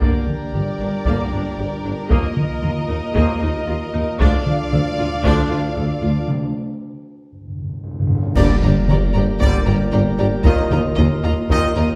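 A driving 4/4 pulse at 115 BPM from close, dry taiko pounded with heavy sticks propels this heroic, relentless G minor film-score cue, where rich bowed violins carry the melody over a warm second violin line, lush violas, a full chamber organ with chiff, a very quiet clear trombone section, a dark French horn section and bright trumpet stabs, all grounded by cellos, double basses and a tuba, until a break at 6.3 s brings round soft-mallet timpani, and bright clash cymbals with concert bass drum mark the accent at 8.4 s, the whole set back in a wet recital hall.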